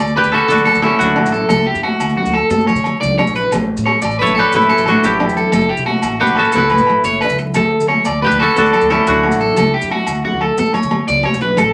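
Carefree and warm, this excerpt of highlife guitar-band music moves at 119 BPM in a straight 12/8 in D major, with an up-front koto carrying the mellow, fingerpicked melody over twangy, slightly broken-up electric guitar arpeggios coloured by phaser, while a woody, thumpy pizzicato upright bass anchors the low end, a full-bodied picked steel-string acoustic guitar picks out an accompaniment in the background, ringing high-tuned congas, vintage agogo bells and grainy maracas keep the percussion bubbling, a very quiet, bright trumpet with scooped notes adds a jazzy second line until 9.4 seconds, and a drum fill at 6.7 seconds leads into the return to D, all set in studio reverb beneath a layer of vinyl crackle.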